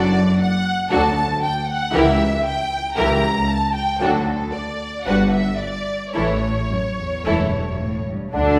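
Wet recital-hall reverb surrounds a full orchestral string sound, with the bloom of a church or concert hall. This short classical passage in D major moves in 4/4 at around 106-120 BPM with a rubato feel, and its mood is lively and spirited. Up front, the first violins carry the melody with a focused, lush vibrato and a smooth top, while a second violin line adds rich body beneath. In the background, the violas supply expressive accompaniment with a soft attack and portamento. Cellos and double basses share the bass, the cellos even and lightly vibrating and the basses more distant. The harmony moves from D over F# through C#dim7 to Gmaj7 and A, and at 8.3 s the winds join: an airy flute ensemble, a very quiet, roomy clarinet, a clear solo bassoon, and a mellow, tight French horn section holding sustained chords.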